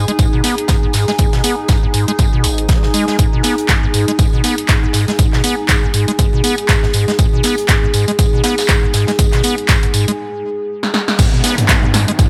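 Opening on a squelchy, resonant square-wave acid bass riff in G# minor and a warbling, nostalgic tape-like pad with phaser and chorus, this driving, trippy acid house excerpt at 120 BPM with swung 16ths soon adds a punchy, tape-warm analog drum machine, an up-front electronic kick and a tight metal kit in the background with pumping high-passed hats and tambourine, then a deep, moody detuned pad enters at 3.2 seconds, a break and drum fill lead to a band accent, and a downlifter sweeps in at 11.2 seconds as the drop hits under light digital reverb.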